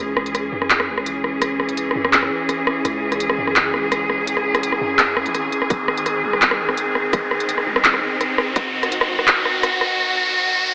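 Half-time drum and bass at 168 BPM in 4/4, this dark, heavy fragment of a longer piece sits in C# harmonic minor and works as one long build-up, moving from C#m to G# at 5.7 seconds. A clear, bowed cello section holds sustained chords up front, its lush ensemble vibrato pulsing with sidechain pumping across the whole span. Beneath it, a deep, sine-like 808-style bass with a fast attack and decaying tail sits in the background, while an electronic riser and swell begins at 2.6 seconds and carries the tension forward. An organic electronic kit of handclaps, smooth hi-hats and rim clicks plays up front with studio reverb, and from 5.7 to 8.6 seconds a tight, layered, overdriven electronic kick punches through. The mix is bathed in a lush hall reverb and filtered into a thin, AM-radio-like tone.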